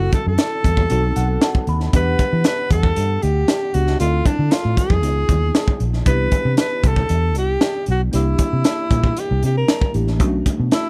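Slick and bittersweet, this short excerpt of polished 1980s jazz-funk pop sets a breathy, whispered alto saxophone melody with light vibrato up front over a worn, slightly out-of-tune tine electric piano with ensemble chorus that adds a fill at 0.9 seconds, a dark, round, foam-muted fingered bass, and a crisp fusion drum kit with a punchy kick and high-tuned snare in a small pumping room, all moving through rich chords from F#m7b5 and B7b9 to Cmaj9 and Bm9 with little reverb.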